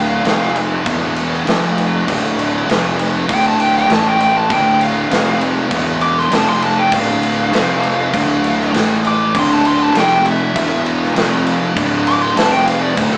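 A straight 4/4 pulse at 99 BPM drives this hypnotic, brooding stoner and doom metal passage in D dorian, cut from a longer piece, with a big acoustic rock kit arriving at 0.3 seconds: punchy kick, medium-tuned snare and bright crash cymbals sitting up front. Two thick, picked fuzz guitars, one warm and one dark, grind out a low riff in the background over F5, E5, D5, A5 and Dm, while a growly, overdriven fingered bass with a bright edge holds down the bottom. A dark, distorted fuzz lead guitar plays a solo across the whole 13.2 seconds, and the band sounds as if captured live in one room, bathed in a moderate large-studio reverb and heard through a small speaker.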